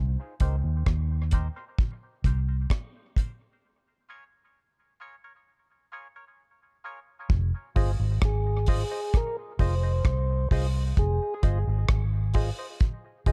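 A slow, straight 4/4 pulse at 65 BPM anchors this deep, hypnotic dub reggae piece in F minor, cut from a longer track, with a dry, acoustic drum kit up front whose tight kick, hi-hat and rim click enter at 0.4 seconds. Beneath it, a vintage muted fingered electric bass, dark, round and foam-muted with an amped tone, opens the recording alone at 0.0 seconds and sits prominently in the low register. Percussive organ stabs, hollow and mellow with a fast attack, a decaying tail and a noise layer, arrive at 0.4 seconds, softened by chorus, thinned by a high-pass filter and trailed by dub echo, while a filter sweep moves across them through the opening section. A break runs from 3.6 to 7.3 seconds as the harmony shifts from Cm7 to Bbm7 before settling on Fm7. In the later passage a clear, clean tonewheel organ melody with audible key click and a stopped rotary speaker plays briefly from 8.3 to 11.3 seconds, its notes echoing into a dark, warm studio ambience.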